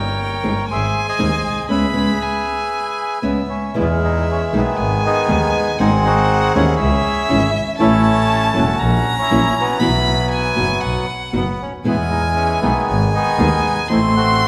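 Elegant and passionate, this rubato tango excerpt at 118 BPM moves from C# minor to E major at 3.7 s, with a reedy, dark bandoneon up front carrying the melody, a bowed violin weaving an expressive second line above it with vibrato and portamento, a biting, earthy bowed double bass holding the low end up front, and a fingerpicked nylon-string guitar entering at 0.4 s with small acoustic accompaniment, the band striking an accent from 1.7 to 3.7 s within the wet reverb of a church or concert hall.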